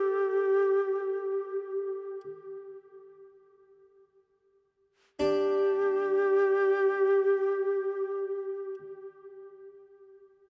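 World meditative music, calm and spacious, in which a breathy cedar flute in the Native American style carries an expressive, up-front melody with woody chiff and vibrato, its tone touched with delay, while a quieter, brilliant plucked harpsichord adds a texture beneath, all bathed in a huge ambient reverb and a dark production.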